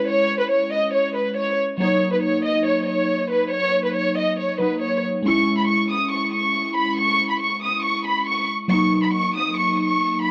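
Cold and dark in mood, this short hip hop passage, cut from a longer piece, moves with a half-time feel in 4/4. A chamber violin section carries the melody throughout, its bowed tone close and intimate, played sul tasto with a soft attack and light vibrato, shaded by a low-pass filter and a trailing delay. Beneath it, digital keys supply the accompaniment with a glassy, sine-like sound whose fast attack gives way to a decaying tail, colored by chorus and a low-pass filter sweep. Both parts sit up front in a light reverb, with the strings the more prominent of the two. The harmony shifts between Dbm and Ebm in each half, with the second section arriving at 5.3 seconds and restating that pairing before the piece is cut off at 10.3 seconds.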